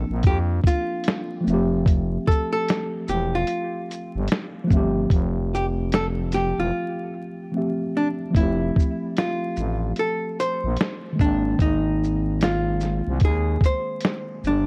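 A dark, hollow-bodied archtop guitar carries the melody through analog delay over a worn, slightly out-of-tune tine electric piano with cassette-tape character and a thick, growling FM bass, all wrapped in vinyl crackle, with a muffled, pitched-down sampler drum kit of thumpy kick, snare, hi-hat and shaker joining at 0.2 seconds with 12-bit grit. This nostalgic, dreamy lo-fi hip hop cut moves at 74 BPM in F major with a swung 16th-note feel, drifting through lush major-ninth chords. A break arrives at 6.7 seconds before the second section, and the harmony shifts to Abmaj9 at 11.2 seconds.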